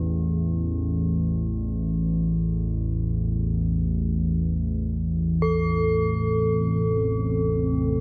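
A chorused analog drone sits up front for the whole 8 seconds, its sawtooth and pulse-wave tones slowly evolving low in the register beside a bronze singing bowl whose dark, metallic ring shows a slow beating. This cavernous, ominous dark ambient fragment in A harmonic minor moves in free time, bathed in a long cathedral reverb. At 6.5 seconds a deep, detuned, wave-folded pad enters in the background, lending moody sustained chords over the A minor harmony that arrived at 5.5 seconds.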